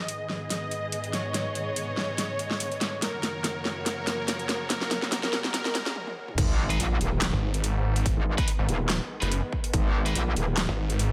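This aggressive, chaotic heavy wobble dubstep excerpt opens on a mellow, detuned supersaw melody with dub echo, set over a dark, lush symphonic string section holding sustained chords, swept by a low-pass filter and pumped by sidechain. The dubstep drum kit enters almost at once, with a huge snare, metallic hats, handclaps, toms and crash in a small room, filling through a build-up that moves from G#m to F# at 143 BPM in a half-time feel with light swing, while a riser and impact sit in the background. After a brief break, the drop lands at 6.4 seconds, where a punchy, overdriven electronic kick arrives alongside a metallic FM wobble bass with chorus, placed up front. Bright, double-tracked high-gain guitar stabs follow with distortion and dub echo, and a snarling, growling sawtooth bass joins at 7.3 seconds to thicken the low end. A light reverb sits over the whole mix, and the strings, kit and growling bass carry on to the end of the cut.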